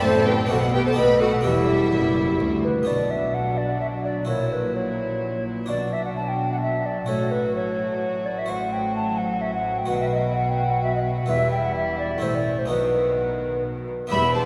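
This stormy, driving baroque-style concerto movement, cut from a longer piece, begins with the full ensemble at once, led by an alto recorder placed up front with a hollow, mellow, pure wooden tone, a straight tone and a tongued chiff softened by rolled-off highs. It moves at 128 BPM in 3/4 with a straight feel, in B minor with tuning at A4 = 436 Hz. A chamber violin section also carries the melody from the background with a rich, focused vibrato, while a second violin line sounds smooth and even beneath it. A close-miked, dry harpsichord with a round, full Italian-style voice on one set of strings plucks the accompaniment. Alongside it sounds a distant, lush viola section, and the bass comes from an intense cello section with a smooth top and a close double bass section, all bowed with vibrato. A short opening passage moving from A minor through E minor gives way at 2.9 seconds to a longer section that works from B minor through F#7 and diminished colours before settling on a B chord at 12.7 seconds, all bathed in a wet church reverb.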